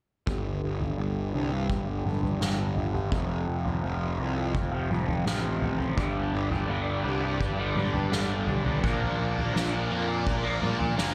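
A bright, double-tracked fuzz guitar riff with phaser and a low-pass filter sweep leads this hypnotic, kaleidoscopic psychedelic rock excerpt at 84 BPM, over a round, overdriven picked electric bass and a distant, roomy soft-mallet drum kit with punchy kick, snare and toms, while a lush, bowed symphonic string section adds smooth sustained chords from 6.0 seconds as the harmony moves through G5, F, G and Bb in a studio reverb.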